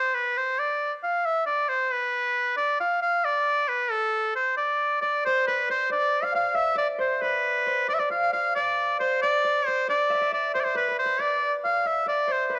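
A bright shawm opens alone, carrying a folk-style melody between A4 and F5 with scooped notes and a smooth top, set up front in a plate reverb. This short cut from a longer medieval dance moves in 6/8 at 90 BPM counted in dotted quarters, with a straight feel and a D dorian colour that sounds ancient and mysterious. At 5.0 seconds a Celtic harp enters alongside it as a second line, fingerpicked and ringing in the range from B4 to F5, sitting lower in the mix and sharing the same plate reverb. The melodic material then repeats, so the piece unfolds as one section stated twice, with the second pass now accompanied by the harp's warm acoustic tone. Tuned to A4 = 439 Hz, the sound has a home-made, cassette-recorded character inside a wet studio ambience with a short decay.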